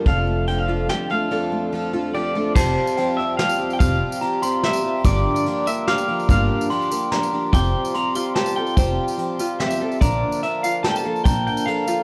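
Hopeful indie folk in 3/4 at 145 BPM in F major, this excerpt builds around an up-front, slightly broken-up electric guitar melody through a small old amp with tremolo and tape echo, over a shimmering, octave-doubled twelve-string acoustic, a reedy pedal harmonium holding chords in the background, and light tenor ukulele arpeggios. A bright fingerpicked steel-string acoustic with audible finger squeak drops out at 3.8 s, just after a mellow, bell-like glockenspiel second line and a jingly tambourine arrive at 2.6 s, and the ukulele returns at 7.5 s. Underneath, a woody, growly pizzicato upright bass and a distant, roomy brush kit with dark cymbals anchor chords moving from Dm/F through Fsus2 and Gm7 to Bbmaj7, all in a small room.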